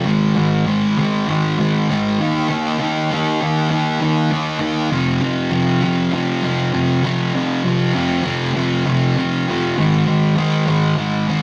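A rough rehearsal-room recording with tube saturation and a wet stone-room reverb frames this raw, menacing rock passage in F minor, cut from a longer piece, at 99 BPM in a straight 4/4. A single fuzz guitar carries it alone from start to finish, its picked, warm, distorted tone double-tracked, compressed and up front, spanning F2 to Eb4. It opens on Ab5, shifts to Eb5 at 2.2 seconds and F5 at 4.9 seconds, then returns to Ab5 at 9.8 seconds.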